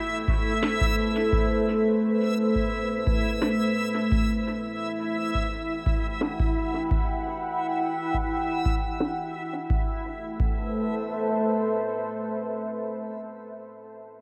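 A deep, dark ambient pad opens this meditative, hazy piece of ambient dub, its detuned sawtooth body sustaining chords with a slow attack and long release, softened by chorus and sitting up front. Alongside it, a reversed, swelling texture adds a dreamy shimmer in a higher register, granular and bright, until about 9.7 seconds. The music moves at 86 BPM in a straight 4/4 in A dorian, with the harmony shifting from Amadd9 to Emadd9 and back to Amadd9. An analog, tape-warm kick sits forward in the mix, while a woody, overdriven snare stays in the background, darkened by low-pass filtering and trailed by dub echo, as a filter sweep runs over the drums through the opening section. A huge ambient reverb with a long tail bathes the whole space, and the fragment, cut from a longer piece, ends with the pad holding alone after the drums drop out around 10.6 seconds.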